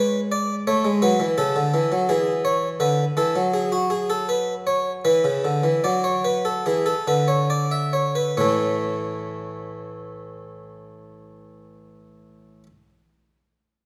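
A solo harpsichord, plucked and round in the French style on a single set of strings, sits up front in this short baroque-style two-part invention, a brief cut from a longer piece. The mood is joyful and elegant, moving in a straight 4/4 feel, and the music gradually slows from about 0.7 seconds until the return of the home chord at 8.4 seconds. Its range runs from A2 up to E5, and the harmony passes through dominant colours, including a suspended and an open dominant seventh, before resolving. A second, shorter section follows and closes by 11.9 seconds. The instrument is bathed in a wet recital hall reverb with a long tail, and a faint mains hum lies beneath the playing.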